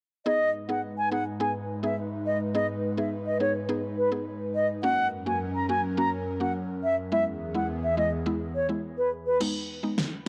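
A home recording on cassette tape, set in a moderate spring reverb, gives this hypnotic, tough dancehall excerpt its hazy, homespun sound. At 105 BPM in a straight 4/4 and G# minor, a pure concert flute carries the melody up front from 0.3 seconds, its soft attack and vibrato making the line expressive. Beneath it, a woody, round FM synth pluck with a mallet-like character and chorus plays short, percussive accompaniment, while an airy, breathy pad holds sustained chords with a slow attack, a moving notch and a long, mellow release. The harmony moves from G#m through F# and E before returning to G#m at 9.4 seconds. At that moment a layered, electronic deep house drum kit arrives up front, with a fat snare and a crash cymbal, the kit sounding tape-warm and re-recorded in a small room.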